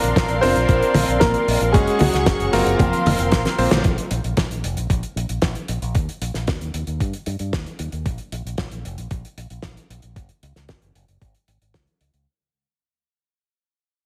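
A dark, mellow concert grand piano carries the melody from 0.4 s, its intimate, vintage tone touched by digital delay and audible action noise, over a sunny, danceable italo disco groove at 114 BPM in 4/4. Around it, a bright, cutting electric grand piano plays chorused stabs, and a rich symphonic string section holds distant, bowed chords with light vibrato, both stopping at 3.8 s after a drum fill and a band accent. A damped 70s drum kit with a dry, fat snare, hi-hat and toms sits up front beside a thumpy, sampler-style electronic kick re-recorded in a large room. A punchy fingered electric bass with an envelope filter and tube saturation drives the low end, staying with the drums through the fade-out that runs from 3.8 s to the end. The chords move from Bbadd9 through Gbsus2 and Fsus4, then circle between Bb5, Eb and Gbsus2, all under a moderate plate reverb and a heavily compressed radio sound in this cut from a longer piece.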